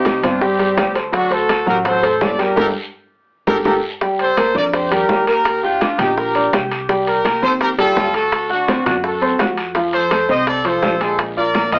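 Salsa at a driving 167 BPM, passionate and fiery, with a bright, vibrato-laden trumpet section carrying the melody up front over a clear concert grand piano accompaniment and a woody, thumpy pizzicato upright bass. Behind them, ringing congas, metal-shell timbales and a raspy guiro sit in the background while tight, high-tuned bongos stay very quiet, and the whole band hits an accent from 2.6 to 4.0 seconds, capped by a drum fill. The short cut has a moderate studio ambience filtered through an AM radio sound, with the chords moving from Csus4 through Gmadd9 to Ebmaj9 and closing on Bb7.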